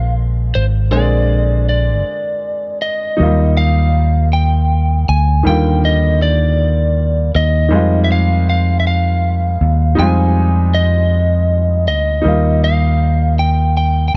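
A lightly driven lead guitar, a clear baby grand piano and a fingered electric bass all begin together at the opening of this slow, tender R&B piece in six-eight, moving at 53 beats per minute in Eb major. The guitar carries the melody with a slightly broken-up, picked, compressed tone and a slapback echo, sitting in a high register above the other parts. The piano plays the accompaniment with a natural, short-sustained sound, while the round, amped bass sits up front and dark in the mix, anchoring the low end. A short break arrives at 2.1 seconds, and at 3.2 seconds the music moves into a new section, with the harmony shifting from Bb9 to Ebmaj9, then Fm9, and finally Ebadd9. The small room ambience and dark, warm production give this fragment of a longer piece an intimate, close feel.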